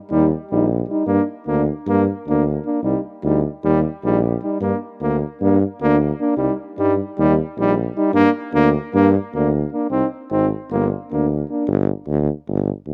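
Restless and bittersweet, this Balkan brass band excerpt in G minor moves in 9/8 at 306 BPM in eighths, with a brilliant, lightly vibrato-tinged trombone up front, a dark, smooth-topped French horn in the background, and a close-miked tuba holding the bass until the trombone and horn drop out at 11.7 seconds, leaving it alone on a G5 chord through 12.9 seconds, all in a rough home demo mix with light studio reverb.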